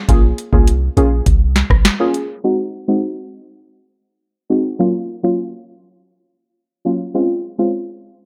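A booming, overdriven analog drum machine with a deep kick, crisp snare, rim click and metallic hats opens this sultry, hypnotic dancehall piece, cut from a longer track, alongside a clean, boomy sine 808-style bass and a soft, warbling vintage chord stab with chorus and sidechain pumping; the bass drops out at 1.8 seconds and the drums at 2.3 seconds, leaving the dark stab alone to carry the Bbm7, Ab7, Gbmaj7 and Dbmaj7 changes in a dry, low-passed mix until 7.7 seconds.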